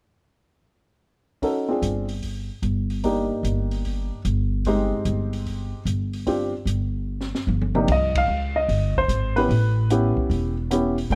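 This jazz piano trio swings with a moody, late-night air, and it is cut from a longer piece. A baby grand piano carries the melody from 1.4 seconds, sounding intimate and natural, with short sustain and audible action noise, placed up front in the mix. An open acoustic drum kit enters at the same moment, heard as if in a small room, with dark cymbals, a high-tuned snare and a boomy kick, while ride, hi-hat and toms fill out the kit. A plucked upright bass joins just after, woody, warm and up front, strung with steel strings. The harmony moves from Dm7b5 to Cm and then A9. A drum fill leads into a new section, marked by a band accent at 8.1 seconds, all in a close, dry sound with little reverb.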